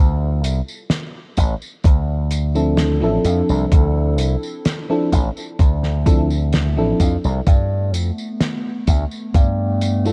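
A slow, straight 4/4 pulse at 64 BPM opens this hazy, melancholic vaporwave fragment in D dorian, cut from a longer piece. A punchy slap bass run through an envelope filter sits up front from the start, joined at 0.4 seconds by a damped 70s drum kit of hi-hat, snare and tambourine, its fat snare dry with a rolled-off top and wrapped in gated reverb. A thumpy, sampler-style electronic kick enters at 1.4 seconds and lands as the most forward element. From 2.5 seconds an FM electric piano layered with a soft pad spreads dreamy, detuned chords over Dm9 through lush chorus and analog delay. Near the end, just after the harmony shifts to Gadd9, a dark, warbly tape-like pad fades in with slow attack and lo-fi 12-bit sampler grit, all under a studio reverb and cassette tape character.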